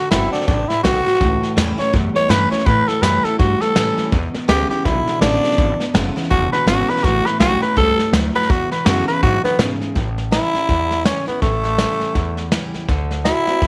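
A growling tenor saxophone leads this rollicking, upbeat rockabilly excerpt at a swinging 164 BPM in A mixolydian, taking a raspy, gritty solo up front with light vibrato through the first 10.0 seconds. Beneath it, a bright, full-bodied steel-string acoustic guitar is picked in the background, its finger squeak audible, while a woody, thumpy upright bass played pizzicato on gut strings and a vintage brush drum kit with a punchy kick and medium-tuned snare drive the groove. At 1.2 seconds a twangy, slightly broken-up electric guitar through a small old amp joins with a riff, dropping out at 9.9 seconds. The harmony moves through dominant sevenths, D7, A7 and E7, before a new section arrives at 10.0 seconds on A7 and turns back to D7 near the end. The whole sits in a small room with light reverb, the brushed kit warm with a rolled-off top beside the sax's bite.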